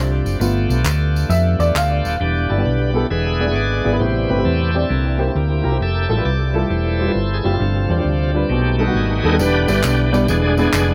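An echo-heavy mix with light reverb carries this hopeful, uplifting uptempo gospel excerpt at 134 BPM in swung 4/4, where a woody, intimate upright piano with audible action noise and analog delay leads at the start before a shouting, lightly overdriven tonewheel organ with key click and a slow rotary speaker takes the solo from 2.2 seconds over its sustained chords, a round, dark hollow-body electric bass sits up front, and tambourine and group handclaps appear near the opening and again from 9.4 seconds.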